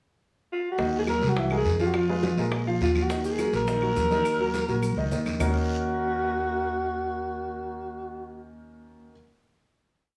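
A growling, gritty alto saxophone leads this sophisticated, driving Afro-Cuban jazz piece in Eb minor at 208 BPM, stating motif-based call phrases up front from 0.5 s with vibrato and a distant, roomy edge. Beneath it, an intimate concert grand with audible action noise and deep bass plays a montuno in octaves, while a woody pizzicato upright bass lays down a tumbao that anticipates the chords. Very quiet congas and bongos, raspy guiro, a clave time line and grainy maracas in the background fill out the groove until a drum fill brings in the Ebm7 final chord at 5.4 s.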